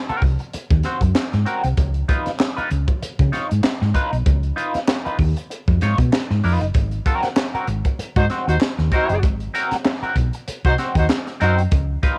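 A 97 BPM funk groove in 4/4 with a 56% swing on the sixteenths drives this gritty, energetic clip in Ab mixolydian, moving from a rootless Ab9 to Db9 and back. Up front, a crisp fusion kit with a high-tuned snare and tight kick in a pumping small room sits with a dark, round hollow-body bass and a bright, picked clean guitar shaded by wah, cassette tape and plate reverb, while distant group handclaps join at 1.2 s. A vintage horn section with light vibrato adds a second line from 8.2 s through its own cassette tape and plate reverb, all captured as a home recording on cassette with light reverb.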